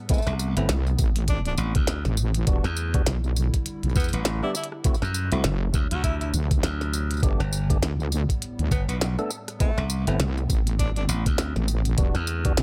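A heavy, saturated wobble bass sits up front in this swaggering, playful glitch hop excerpt alongside a bright, punchy slap bass, a pitched-down, thumpy electronic kick, and a glitchy kit of clicky hats and tiny snare, while a close-miked tenor saxophone sings a clear jazz melody with vibrato over fat, overdriven tonewheel organ stabs with fast rotary swirl and sampler grit, and a very quiet, warbling lo-fi pad adds nostalgic chords, all in a dry, swung mix.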